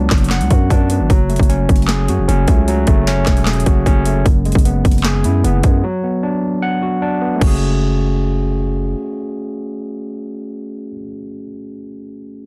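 The recording is dry, dense and heavily limited, with a modern sheen, and this fragment of a longer piece has an eerie, dark trap and hip hop mood over a half-time feel. An overdriven tine electric piano, barky and gritty as if played through a combo amp, sits up front with the accompaniment, moving over chords such as F#madd9 and E/F#. Beneath it, a growling 808-style bass has a buzzy, sine-based tone with a fast attack and a decaying body. The electronic trap drum kit is also overdriven and up front, pairing a hard-clipped kick and a sharp snare with metallic hi-hats, handclaps and a crash cymbal. A break arrives before the kit drops out at 7.5 seconds, and the bass stops at 9.0 seconds. After that, the electric piano carries on alone until 12.5 seconds.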